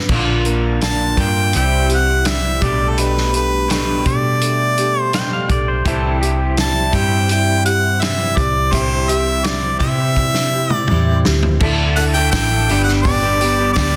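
A dense, heavily limited modern master with light studio reverb frames this jangly, warm stretch of folk and heartland rock, cut from a longer piece and moving at an unhurried 83 BPM in a straight 4/4. A boxy, picked acoustic archtop guitar and a slightly broken-up, lo-fi electric guitar riff through a small old amp with lush chorus run throughout, over a round, dark hollow-body bass and a natural-sounding vintage kit with dark cymbals, a tight kick and a medium-tuned snare. A bright, punchy harmonica takes the lead from 0.8 seconds, up front with light vibrato and scooped notes in a pop style. At 5.1 seconds a clean, compressed pedal steel, played with fingerpicks and volume swells, adds a brief second line, soon followed by a very quiet, brilliant concert grand piano and a lightly overdriven tonewheel organ with key click and slow rotary holding sustained chords. The chords move from Bb through C and Gadd9/B, and a drum fill leads into a closing passage on Dsus2 and G, where a jingly, band-limited tambourine joins faintly at 12.0 seconds.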